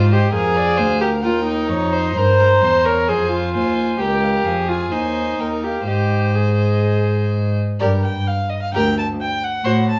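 Heard through worn, warbling old cassette tape with warbly pitch drift and a small room's light reverb, this restless, urgent excerpt from a quick classical-period string quartet movement in Ab major moves at 129 BPM in 4/4 with uneven, rubato beats. All four players bow with period-style gut-string tone: a dark, reedy first violin carries the melody with light vibrato above a rich second violin line, while a warm viola accompaniment and a smooth-topped cello bass sit up front. A new section arrives at 7.8 seconds on a G minor chord before the fragment breaks off at 10.0 seconds.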